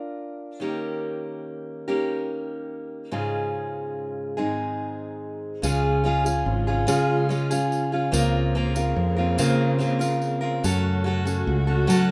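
Acoustic folk in 6/8 at 48 BPM (dotted quarters), this gentle, nostalgic passage in D-flat major opens with a bright, up-front picked steel-string acoustic guitar alone, its finger squeaks audible as it moves through chords such as Eb7 and Db/Ab. At 5.6 seconds a round, dark fingered electric bass enters up front, joined by a soft-attack chamber string section holding sustained, sul tasto chords with light vibrato in the background and a jingly tambourine. Light reverb surrounds the whole as the harmony drifts from Db through Bbmadd9/Db to a wistful Gbm.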